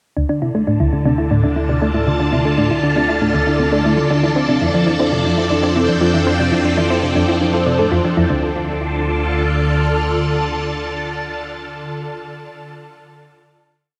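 Cosmic and expansive, this short ambient space-music piece is built on sequencer lines bathed in a huge, wet reverb. A tight, driving sequenced synth with a wave-folded, plucky edge cycles a five-step riff that drifts against the bar, its sound treated with chorus, phaser, cassette-tape colour and delay. Above it, a tine-like, thumb-piano-style pluck with a gritty, vintage sampler character runs three-step arpeggios under a filter sweep, while underneath, a mellow, evolving analog drone holds the root in the bass. A bright, swirling string machine sits up front with phased, chorused chords that shift from D minor to F6 and back. A breathy, wind-like noise texture holds a high note quietly in the background, and from 8.3 seconds the piece settles onto a final sustained chord that the strings carry until 12.3 seconds, joined by the drone until 9.8 seconds.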